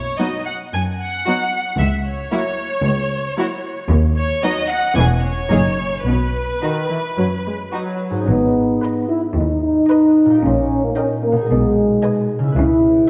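This playful, whimsical film cue opens with a chamber string ensemble playing con sordino: muted violins carry a veiled, vibrato-touched melody over a softer second violin line, viola accompaniment and a cello and double bass foundation. At 8.1 seconds a ringing concert harp enters with fingerpicked arpeggios, and at 8.2 seconds a dark French horn section joins with soft-edged sustained chords that sit prominently up front. A wet scoring-stage reverb surrounds the quirky ensemble in this excerpt from a longer piece.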